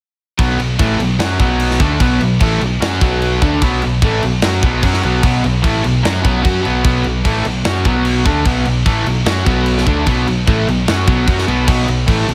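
Hard rock at 149 BPM in a straight 4/4, this short excerpt from a longer piece feels energetic and swaggering, opening on a B5 chord at 0.4 seconds and driving through to 12.3 seconds. Two overdriven semi-hollow guitars carry the riff together, one dark and colored by a phaser, the other brighter, both with a picked, hollow-body character. Behind them sits a scooped, high-gain guitar, distorted and double-tracked, also playing the riff. A growly, punchy picked electric bass anchors the low end with an amped, warm tone. Up front, a tight metal drum kit pushes the groove with a tight kick, a medium-tuned snare and bright crash cymbals, the drums sounding acoustic and mid-forward in a big room. A moderate large studio reverb with a 1.1-second decay, plus a touch of small-room ambience, gives the mix a roomy but focused sound.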